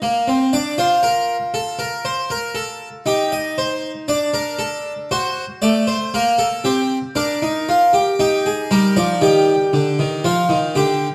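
A recital hall's reverb, with a 1.5-second decay, surrounds a close, up-front solo harpsichord in this solemn, serious baroque-style three-part fugue. The instrument is a French-style harpsichord with three sets of strings, and its plucked tone comes across full and brilliant, reaching from D3 up to Eb5. The music moves at a stately 59 BPM in a straight 4/4, tuned to A4 = 442 Hz. The harmony passes from Bbmaj9 through Cm, D, Gm/Bb and Ebmaj9 before the chords fall away at 10.2 seconds. This 11.1-second passage is cut from a longer piece, and the harpsichord plays alone throughout.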